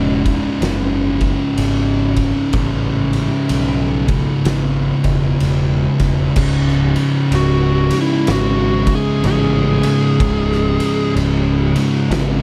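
Dark, dry production with little reverb gives this sludgy stoner and doom metal excerpt a close, ominous weight. A double-tracked, thick fuzz guitar sits up front carrying the riff, while a picked electric bass, direct and amped with overdrive, punches beneath it from the opening moment. An oversized low-tuned acoustic drum kit joins at 0.3 seconds, its fat snare, punchy kick and dark crash and ride cymbals ringing in a bright stone room that pumps around them. The slow 4/4 groove carries a lazy swing on the eighth notes. At 7.4 seconds a compressed fuzz lead guitar enters with a short melody trailed by analog delay, playing until 11.1 seconds as the riff grinds on beneath it.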